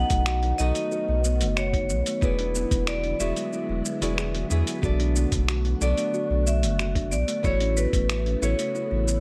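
A bright vibraphone melody struck with hard mallets opens this wistful sunset chillout excerpt in B dorian at 92 BPM, both it and woody kalimba arpeggios echoed by digital delay, over fingerpicked nylon-string guitar carrying vintage 12-bit sampler grit and delay, a silky string machine shimmering with phaser and ensemble chorus, and a deep, round sub bass sitting up front. At 0.1 seconds a compressed, overdriven sampler-style kit of finger snaps, hi-hat and shaker enters together with a thumpy electronic kick, both set in studio reverb, with the kick dropping out at 8.1 seconds. The chords move from B7 through E9 and Bm7 to A69 under a light reverb.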